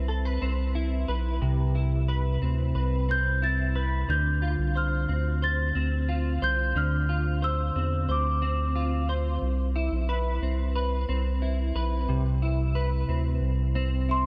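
Haunting and hazy, this short dream pop passage is cut from a longer piece and drifts along in a steady, straight 4/4. A clean electric guitar plays picked arpeggios throughout, its compressed, up-front tone thickened by ensemble chorus and trailed by digital delay. Beneath it, a round analog bass holds the low end with a deep, nasal, sine-like body and a fast attack that sustains into a dark hum. A large celesta carries the melody high above, entering at 3.1 seconds and dropping away at 9.1 seconds before reappearing briefly at 14.1 seconds, its bell-like, delicate voice, struck with soft felt hammers, ringing sweetly through its own digital delay. The harmony moves from Cmaj7 to Dm7 and back to Cmaj7, and a light studio reverb gives the whole a gentle, misty space.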